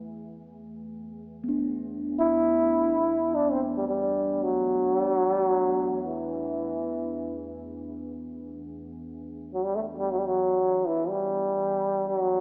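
Spacious and meditative, this world meditation excerpt rests on a glassy FM pad drone with ensemble chorus and its own built-in reverb, while a quartz singing bowl struck with a felt mallet rings with pure, slow beating until 9.3 seconds. From 2.2 seconds a bucket-muted trombone takes the solo melody up front, veiled and mellow in a jazz style, with vibrato and scooped notes. A lush hall reverb lends a roomy, distant air, though the whole carries a small-speaker sound.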